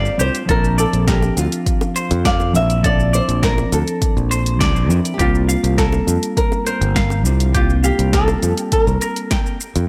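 A light reverb sits over this smooth, warm sunset chillout fragment, cut from a longer piece, where a growly, bright fingered electric bass sits up front beneath a fingerpicked flamenco guitar melody trailed by tape echo. A dark, clean electric guitar comps quietly in the background while a picked semi-hollow guitar spins hollow-toned arpeggios through digital delay, the harmony moving from Bbmaj9#11 to C7sus4 at 5.2 seconds. A deep electronic kick joins an overdriven deep house kit with hi-hat, shaker and punchy snare at 0.5 seconds, both re-recorded in a small room, and tight, high-tuned bongos add dry accents in the background from 1.2 to 8.4 seconds.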